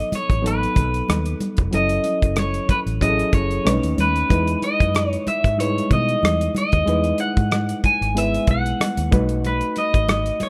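In a rough home-demo mix with studio ambience, this short, silky and bittersweet cut of lush 1970s-style soul sets a twangy, slightly broken-up electric guitar melody with subtle chorus up front over a barky, overdriven reed electric piano bathed in spring reverb, a dark, round, foam-muted fingered bass, a cloth-damped, thuddy drum kit of tight kick, hi-hat and rim click, and soft-handed congas in the background, all moving through B7, F#m7, B9 and a long Emaj7 on a gently swung sixteenth-note feel.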